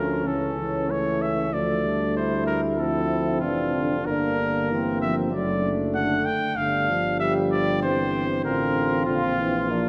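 A clear trumpet carries the melody up front in this short classical brass quintet passage, cut from a longer piece, sounding noble and triumphant in D minor at 96 BPM in 4/4 with a flexible, rubato feel. Beneath it, a flugelhorn with light vibrato sings a second line from a distance, while a mellow euphonium with vibrato and a French horn with light vibrato, set further in the background, fill out the accompaniment. A warm bass trombone with light vibrato anchors the low end, sounding distant and roomy. All five instruments play together throughout, from 0.0 to 9.9 seconds, moving through A/C#, Dm, Gm, D/F#, Gm7 and arriving on Bb near 9.1 seconds. A wet concert hall reverb surrounds the ensemble, lending the brass a spacious glow.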